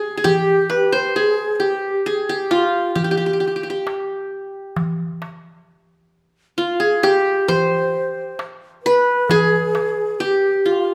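A bright, fingerpicked qanun with triple strings carries the melody up front in this passionate Turkish makam ensemble piece in G makam hicaz at 133 BPM in a straight 10/8, with a breathy, mellow end-blown ney adding a soft-attack second line with vibrato in the background and a crisp, close metal-shell darbuka struck with hard hands entering at 0.2 s, all in a recital hall's 1.4-second reverb, cut from a longer piece.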